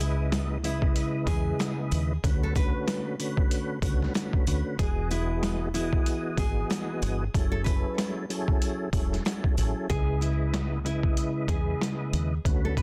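Nostalgic and soulful, this swung boom-bap hip-hop excerpt moves through a C#m7, Bm7/D, Emaj7 and F#m7 progression. Up front, a gritty, overdriven, pitched-down sampler-style drum kit with a thumpy kick and medium-tuned snare sits alongside a smooth, clean tonewheel organ with key click, chorus vibrato, slow rotary speaker and cassette-tape coloring. A dark, round, punchy foam-muted fingered bass anchors the low end, while a full-bodied, fingerpicked nylon-string guitar carries the melody through digital delay and jingly sleigh bells sit in the background until 9.8 seconds.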